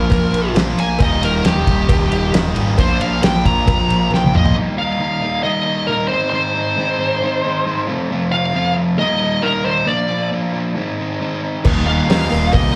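This confident, driving classic rock excerpt opens mid-solo. A smooth, up-front overdriven lead guitar with slapback echo soars over riffs from an overdriven semi-hollow guitar with spring reverb and a bright distorted electric guitar, both also carrying slapback echo. A growling fingered bass, direct and amped, and a damped 70s drum kit with a fat snare, tight kick and rolled-off top drive the band in a straight four, while a close, dry cowbell with slapback echo sits in the background. A drum fill from 4.1 seconds closes the opening section. The drums, bass, distorted guitar and cowbell then drop away, leaving the lead and the hollow-body riff guitar over chords moving through Eb, Ab and F. At 11.6 seconds the cowbell returns alongside a very quiet, double-tracked second semi-hollow guitar riffing low, and the drums, bass and distorted guitar follow at 11.7 seconds, all heard through a club PA in a small room with the feel of a live gig.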